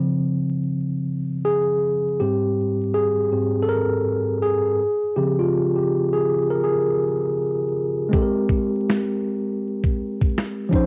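This cosy, nostalgic lo-fi hip hop piece moves at 81 BPM in Ab major with a swung feel. A clean tine electric piano, heard as if through built-in speakers and dulled by cassette tape and a low-pass filter, plays alone over Dbmaj7 and Abmaj9 chords until 8.1 seconds. Then a gritty, compressed sampler-style drum kit enters up front with finger snaps, a thumpy kick and a medium-tuned snare, all set in light digital reverb amid vinyl crackle and a homemade cassette sound.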